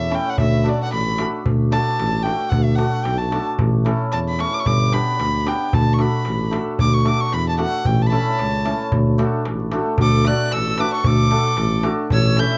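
A dark, intimate violin leads this exuberant, wild Balkan wedding-band excerpt, its airy, sul tasto bowing with light vibrato and a soft attack sitting close and up front, carrying a solo melody from the start until 10.0 seconds, touched by plate reverb. The tune moves at 112 BPM in 2/4 with a light swing on the sixteenths, in D major over chords of D, A and G. Beneath it a punchy tuba with a smooth top supplies the bass line, while a crisp metal-shell darbuka struck with hard hands drives the percussion. A bright, shimmering hammered dulcimer rings out the accompaniment, and at 10.0 seconds a reedy accordion with slow beating enters as a second line as the music moves into a new section. The whole sits in a small, wet room with a dark, warm production, cut from a longer piece.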